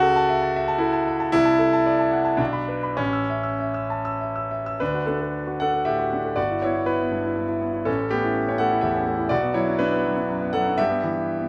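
Warm and passionate, this short classical passage is a romantic character piece for solo piano in D major, moving in a flexible rubato triple metre that ranges from 95 to 129 BPM, tuned to A4 = 443 Hz. The concert grand carries everything alone across its 11.5 seconds, spanning G1 to E6, with a brilliant, polished tone, deep bass and an up-front presence framed by light reverb. The opening phrase moves from A/C# through D7/C before the harmony briefly falls away at 2.4 s and settles on A. A new phrase begins at 4.8 s on D, then passes through Em/G, A7 and Bm before returning to Em/G as the passage breaks off, cut from a longer piece.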